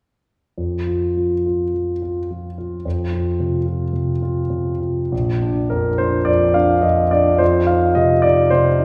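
A warm concert grand piano, intimate and polished with deep bass, long sustain and audible action noise, carries this passionate romantic classical character piece in B-flat major, tuned to A4 = 442 Hz, playing solo from 0.6 to 8.8 seconds at 105 BPM in 4/4 with uneven, rubato beats, moving into a new section at 5.1 seconds where the harmony settles on B-flat, all set in a wet recital hall reverb heard from further back in the room, in a short cut from a longer piece.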